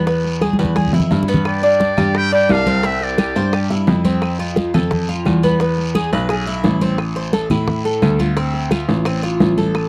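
Sultry and danceable, this short cut from a longer piece of Cuban son and guajira moves at 174 BPM in a straight 4/4, set in A minor. The up-front Cuban tres picks metallic arpeggios on its doubled strings, while a baby grand piano carries the bass line in the low register with a present, short-sustained tone. Tight, high-tuned bongos played with soft hands sit over thick-skinned congas in the background, joined by a raspy guiro and very quiet woody claves, with a drum fill from 0.4 to 1.5 seconds. A trumpet with a metal mute takes the buzzy, thin solo melody from 1.5 to 3.7 seconds, using light vibrato and scooped notes with a smooth top, as a breathy, chiffy jazz flute traces a second line above it in the background. The harmony passes through E, Gadd9, Cadd9 and F, returns to E, then settles on Am and Dm7 in the closing section from 7.0 seconds, all captured in a dry, close 1970s-style studio sound with little reverb.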